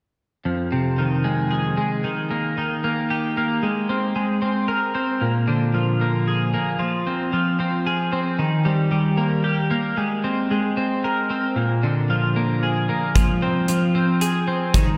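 Brooding and melancholic, this post-rock fragment in 3/4 sets a bright, twangy twelve-string electric guitar up front, picking clean arpeggios through an Fm7, Eb, Abadd9, Bb7 cycle coloured by analog chorus and diffuse ambient delay, before a huge arena drum kit joins at 13.2 seconds with hi-hat and a punchy kick, all in a dreamy mix soaked in lush hall reverb.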